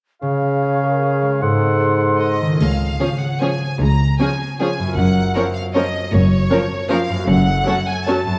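A sweeping, festive orchestral ballroom waltz in Db major at 153 BPM in 3/4, taken from a longer piece and played with rubato and uneven beats, opens with a mellow, hollow flute, a clear oboe, a distant clarinet and a present bassoon sharing a brief wind passage over ringing, fingerpicked concert harp arpeggios. At 2.2 s a rich, vibrato-laden violin section takes the melody, and by 3.0 s a second violin line has entered and distant violas fill the accompaniment, while bowed cellos and intense double basses carry the bass and a dry, background triangle adds a brief, dark metallic touch. The harmony moves from Db through Ab7b9 and back to Db, then on to Gbmaj7 and a darkening Gbm, all set in a moderate scoring-stage reverb with a dark, warm production.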